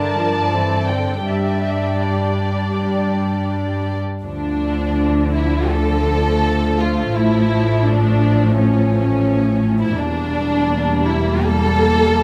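Muted, veiled string sections open this sorrowful, moving D minor film-score excerpt at a rubato 83 BPM, with violins carrying a smooth-topped melody until 3.5 seconds over a lush, up-front second violin line, soft-attack violas and dark cellos, before bowed double basses enter at 4.2 seconds beneath chords moving from D minor through A to E diminished, all captured close and detailed in light reverb.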